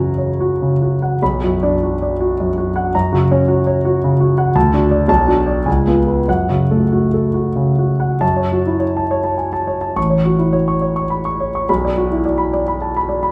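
Stormy yet bittersweet, this romantic character piece for solo piano moves in 3/4 time with a rubato feel, its tempo drifting between 90 and 116 BPM, and settles into F# minor from 4.6 seconds. A concert grand carries the whole passage alone, ranging from A1 up to C#6, with a deep bass and an intimate, up-front presence that keeps the noise of its action audible. Its tone is natural and close, set inside a wet recital hall reverb that lends the sound a lingering bloom. The harmony passes through F#, Bm, D, Bm7 and C#7 before landing on F#m, then later leans on F#m/A and Bm. A new section begins at 8.2 seconds and runs to the close at 13.3 seconds, where this passage is cut from a longer piece, and the tuning sits slightly low at A4 = 437 Hz.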